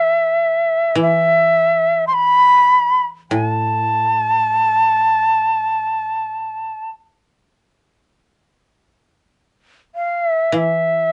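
A reedy, airy shakuhachi carries the melody up front from the first moment, its soft attack and vibrato floating over a low, woody koto plucked with fingerpicks and set dry and further back. This austere, still fragment of Japanese chamber music moves in a free, unhurried rubato and shifts into a new passage at 8.1 seconds. Light reverb and a dark, warm production keep the highs subdued throughout.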